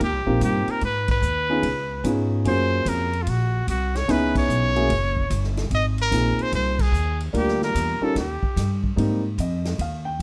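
Close, detailed microphones and a light reverb give this short cut from a longer small-group swing and bop performance a natural studio-room presence. The mood is relaxed and swinging, in 4/4 at 147 BPM, with a bright, present trumpet carrying the melody up front and its jazz-style vibrato ringing until 8.8 seconds. Beneath it, a pizzicato upright bass with gut strings sounds woody and thumpy, also sitting forward in the mix, while an acoustic drum kit of ride, hi-hat, crash, medium-tuned snare and punchy kick keeps a natural swing feel. A warm grand piano enters at 0.3 seconds as accompaniment, its intimate, natural tone carrying audible action noise. The band plays a few accents together, and the harmony moves through chords such as Abm, Db7 and Gbmaj7 before reaching Abmaj7 as a new section begins at 9.0 seconds.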